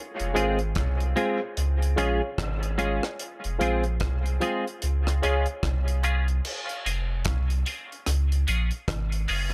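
A round, up-front sine sub bass anchors this heavy, meditative dub reggae excerpt, with a tight-kicked, dry drum kit of rolled-off crash, hi-hat and rim click, a bright, twangy picked electric guitar through analog chorus and dub echo, and reedy, worn, slightly out-of-tune electric piano stabs also sent into the echo, all cycling between F minor and D-flat chords in an echo-heavy mix where a filter sweep takes hold from 3.2 seconds.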